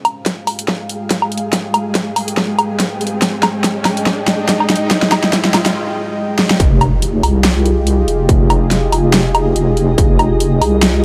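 Brooding and cavernous, this deep dubstep excerpt moves at 142 BPM in a half-time feel with swung sixteenths, set in F minor over an Fmadd9 chord. A dark analog pad of detuned sawtooth and triangle tones with a sub octave holds sustained chords from the start, its slow attack, long release and chorus giving it a moody, full-bodied, evolving quality, while a flickering, grainy granular texture with its own reverb sits in the background. The dubstep kit brings a huge snare, bright hats and woodblock up front, joined by a layered electronic kick with distortion and a high-pass filter, and a drum fill runs through the build-up until the break. A riser in the background climbs from 2.3 seconds, a short break arrives at 5.8 seconds, and at 6.6 seconds the drop lands with an impact. There a deep, soft wobble bass of detuned square and sine waves enters up front, compressed and chorused, with a fast attack and sustained notes between F1 and C2. 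Light reverb and a tape-warm sheen on the drums round out the sound.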